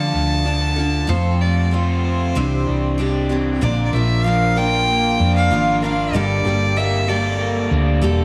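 Wistful and reflective, this short excerpt of folk rock with a heartland rock edge moves at 95 BPM in a straight 4/4, with chords passing from Dm through F and Cadd9 to Bb and Gmadd9. A rich, biting fiddle with light vibrato and an airy bow carries the melody up front, while a bright picked steel-string acoustic guitar accompanies it, both trailed by tape echo. A crunchy, double-tracked overdriven guitar riffs beneath, and a dark, round hollow-body bass sits prominently in an echo-heavy mix with light reverb and small room ambience.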